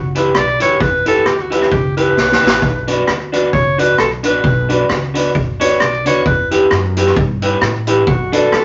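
A breathy, whispered alto saxophone solo with scooped notes and vibrato opens this mischievous, driving swung ska excerpt over a woody, thumpy pizzicato upright bass, joined at 0.2 seconds by a slightly broken-up picked electric guitar and a boomy-kicked street-band drum kit, both carrying slapback echo, plus mellow stabs from a dark upright piano, with a brief drum fill at 2.2 seconds, all in a wet studio ambience with a rolled-off top.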